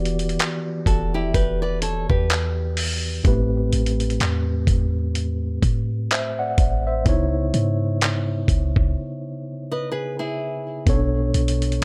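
A mellow tine electric piano and a deep, boomy 808-style bass open this moody contemporary R&B excerpt together, with a dusty soul sampler-style drum kit of handclaps, hi-hat and a thumpy kick arriving almost at once. At a slow 63 BPM in 4/4 with a 16th-note swing, the groove carries a longing feel as the harmony moves through Em9, Am9, C#m9 and Bm9. The gritty, compressed drums sit up front beside the clean-toned piano, while the dark, sine-like bass decays after each fast attack. A fingerpicked flamenco guitar joins at 0.9 seconds with warm acoustic arpeggios coloured by tape echo, then returns at 9.7 seconds during a brief break. The sound is dry, tuned slightly below standard pitch.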